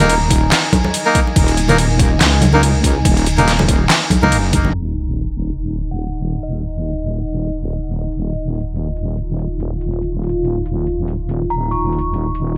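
Deep dubstep cut from a longer piece, heavy and dark, with a swung half-time feel. A saturated, wobbling sawtooth bass sits up front through the whole passage. A moody, slowly blooming ambient pad with chorus and its own reverb holds sustained chords underneath. The opening drop pairs a knocking, overdriven electronic kick with a layered dubstep kit of deep snare, bright hats, handclaps and crash, plus ringing congas in the background on dub echo, while a reedy, breathy melodica jabs out stabs. At 4.7 s the kick, congas and melodica have dropped away, and an electronic sub drop lands as an impact. An eerie, inharmonic FM synth bell with a warbling chorus and dub echo floats brief phrases above, and the whole mix carries light digital ambience, vinyl crackle and a low-pass filter.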